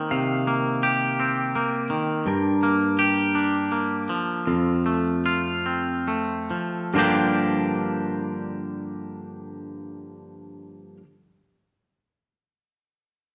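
A clean, twangy electric guitar picks arpeggios up front over Cm7, Gm7 and F in this brooding, cinematic rock fragment in 3/4, while a fingerpicked, compressed pedal steel guitar holds sustained slide chords with volume swells in the background, the band playing live in one room with a large studio reverb and slowing down between 2.3 and 7.0 seconds.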